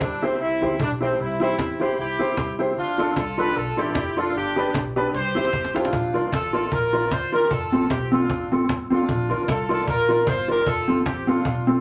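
This joyful, bouncy ska passage is cut from a longer piece and opens with horn section, upright piano, upright bass and cajon together at 152 BPM, with a light swing on the eighths. The horns carry the melody up front as a warm, pop-style ensemble with a smooth top and light vibrato, while the woody, slightly detuned upright piano supplies stabs. The cajon sits close and snappy, with snares under hard hands, and the dark pizzicato bass on steel strings stays low in the mix. From 0.2 s a mellow, clean electric guitar adds fingered, compressed accompaniment through spring reverb and slapback echo. A drum fill from 5.1 s leads into the second section at 5.9 s, where the piano drops out and the harmony shifts from C toward Bb and F, inside a wet studio reverb.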